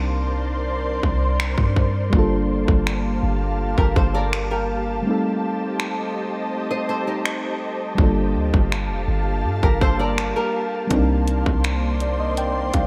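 A dreamy, reverb-soaked mix opens this moody, late-night contemporary R&B excerpt, where a mellow, round FM electric piano with chorus and phaser and an ethereal, airy detuned pad carry the chords over a deep, boomy 808-style bass, while an up-front trap drum kit with a hard-clipped kick, bright hats and finger snaps joins at 1.0 s, a fingerpicked flamenco guitar drifts through arpeggios with analog chorus and diffuse delay from 3.8 s, and the electric piano adds a fill at 11.6 s.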